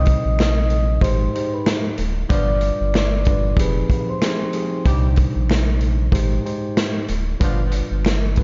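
A dark, rolled-off sound sits in a small room with light reverb, giving this short boom-bap hip-hop cut from a longer piece a tough yet reflective mood at 94 BPM, with a lazy 16th-note swing in C harmonic minor. A raw acoustic garage drum kit sits up front with a tight kick, a medium-tuned snare and hi-hat, joined by a deep, full sub bass with an octave layer whose sine-and-triangle tone has a fast attack and long sustain. A mellow, clean tine electric piano carries the chords through its built-in speakers, moving from Cm through Abmaj7, G7 and Fm7 to Cmadd9. Over it, a ringing, metallic vibraphone played with soft mallets and slow motor vibrato sings the melody through a diffuse ambient delay until 4.8 seconds. Further back, a loose, jazz-style horn section adds smooth-topped stabs with light vibrato and octave doubling, while a very quiet, close finger snap ticks along.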